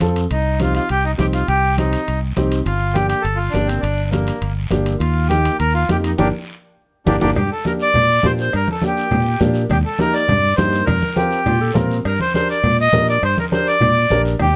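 A driving, passionate cumbia opens at once with the full rhythm section: a woody upright piano with audible action noise accompanying in the middle register, a fingered electric bass sitting up front, ringing congas, and a raspy guiro and metal-shelled timbales and cowbell tucked into the background. Almost immediately the reedy accordion takes the melody, mid-forward and bathed in plate reverb, carrying the tune over a straight four-beat groove. The band lands a shared accent from 6.2 to 7.4 seconds, marking the turn into the second section as the chords move through Gm and Eb toward Fsus4. Near the close, a breathy clarinet with light vibrato and a soft attack adds a brief jazz-tinged second line between 11.5 and 12.0 seconds. The sound is close and detailed with only light room ambience, and the passage is cut from a longer piece.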